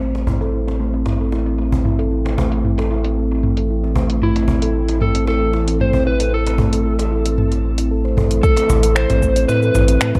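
Warm and hypnotic, this organic downtempo excerpt rests on a deep, round sub bass and ringing steel tongue drum arpeggios under a filter sweep, joined by a woody, distant cajon, an afro-pop kit of metallic hats, snaps, shaker and toms, and a warbling, detuned pad in the background, before a dark, slightly broken-up electric slide guitar takes the melody at 4.2 s and a layered electronic kick drum arrives at 8.4 s in an echo-heavy mix.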